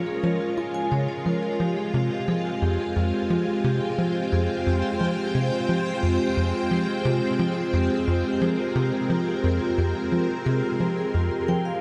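Lush string machine chords and a punchy sequencer bass riff open this hypnotic, cosmic slice of ambient space music, cut from a longer piece in a steady, straight four. The full-ensemble string machine sits up front with a bright, vintage sawtooth tone, a sub octave beneath it, a slow attack and an ensemble chorus that keeps its sustained chords shimmering. Underneath, the tight sequencer bass mixes sawtooth and square waves with a filter pluck and a moving notch, its fast-attack, decaying notes sent through analog delay. From 0.1 s a vibraphone played with medium hard mallets adds metallic, ringing arpeggios, carrying a slow motor vibrato and a boxy small-room character along with its own analog delay. The harmony moves from Bbm7 to Fmadd9 at 1.6 s, and a huge, wet ambient reverb gives the dark, warm production a vast space.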